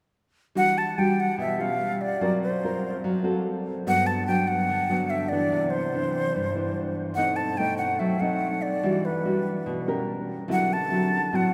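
At 0.6 s a mellow, airy jazz flute and a thumb-plucked classical nylon-string guitar enter together, both up front, in this wistful, melancholic bossa nova excerpt in E minor at 145 BPM in straight 4/4. The flute carries the melody with vibrato and a tongued, chiffy attack over the guitar's warm acoustic accompaniment, which moves through rich harmony from Em9 through Gmaj7, Cmaj9 and B7b9 before returning to Em9 and closing on D9. A wet cathedral reverb with a long 7.2-second tail places the duo in a church or concert hall, and the piece is cut off at 11.5 s.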